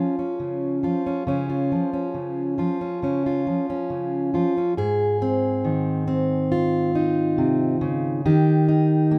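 Folk piece in Ab major at a slow 69 BPM in straight 4/4, pastoral and nostalgic in mood, cut from a longer work. A solo fingerpicked, plugged-in steel-string acoustic guitar with a jumbo body carries it from 0.0 to 9.2 seconds, sitting up front with a full-bodied, fresh-stringed sound between Ab2 and Ab4. The harmony moves from Db to Ab at 4.8 seconds, then reaches Eb at 8.3 seconds, all in a light reverb.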